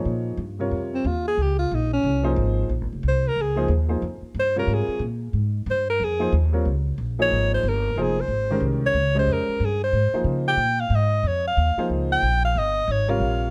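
This is modal jazz at a brisk 183 BPM in 4/4, swinging its eighth notes and sitting on a Bb dorian centre, with a cool, spiritual mood. Upright bass and baby grand piano open together from the start, with the bass plucked on steel strings for a woody, acoustic tone, and the piano sounding natural and warm as it comps beneath. The alto saxophone enters at 0.9 s and carries the melody as a solo, a vibrato-laden jazz voice ranging up to G5. The harmony rests on a single Bbm9 chord, and the passage stays within one section through its close at 13.5 s. All three instruments sit up front, captured by close, detailed microphones in a light reverb, and the piece is cut from a longer performance.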